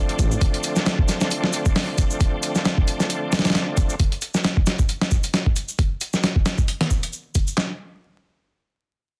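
A dusty, compressed soul sampler-style drum kit with a thumpy kick, medium-tuned snare, hi-hat and handclaps sits up front in this energetic, gritty breakbeat excerpt with a swung sixteenth feel, joined by a layered electronic shaker, while a bright, shouting overdriven tonewheel organ holds a Dm7 chord from the very start until 4.0 s through fast rotary speaker, chorus vibrato, key click and sidechain pumping, with light reverb, vinyl crackle and a dense, heavily limited master, before the drums stop at 7.7 s.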